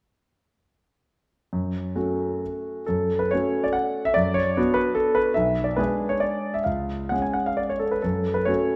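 From 1.5 s a solo concert grand piano, intimate and up front with deep bass and audible action noise, sets a wistful, capricious romantic dance in 3/4 with dotted rhythms and free rubato between 121 and 159 BPM, moving in F# minor through Bm/F#, G#dim/B and C# before settling back on F#m at 8.0 s across a range from B1 to G#5, all bathed in the wet reverb of a recital hall in this passage cut from a longer piece.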